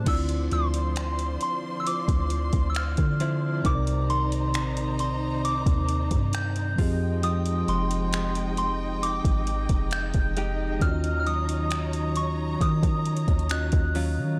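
Dark, warm production with digital ambience frames this moody, longing slice of contemporary R&B at 67 BPM in D phrygian, drifting through Dm9, Cm9, Fm9 and Ebm9 chords. A soft, pure FM synth bell carries the high melody with chorus and digital delay over a mellow tine electric piano, while a distant, lush string section holds bowed chords with vibrato, portamento and sidechain pumping, and a clean, scooped direct guitar plays tremolo-shaded arpeggios in the background. Underneath, a deep, round 808-style bass and an up-front electronic drum kit, re-recorded in a large room with a soft kick, metallic hi-hats, finger snaps and crash cymbal, anchor the straight 4/4 pulse.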